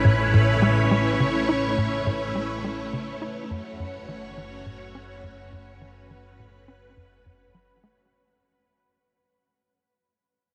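Ambient, sequencer-driven space music with a cosmic, expansive mood, this short excerpt cut from a longer piece moves in a straight 4/4 and fades out across its full 8.1 seconds. A tight, punchy sequencer bass drives a nasal sawtooth-and-square riff with a fast-attack filter pluck, colored by analog chorus and tape echo, while a filter sweep reshapes its tone. Up front, a lush vintage string machine holds soft-attack ensemble chords through phaser and ensemble chorus, moving from A to F#m at 3.5 seconds. Beneath it, a mellow analog drone sustains low sawtooth and pulse-width-modulated tones with a slow attack and long release. High above, a resonant, bubbling texture steps through random filter changes, bathed in chorus and its own reverb, and the whole mix sits in a huge, wet ambient space with a 7.6-second decay.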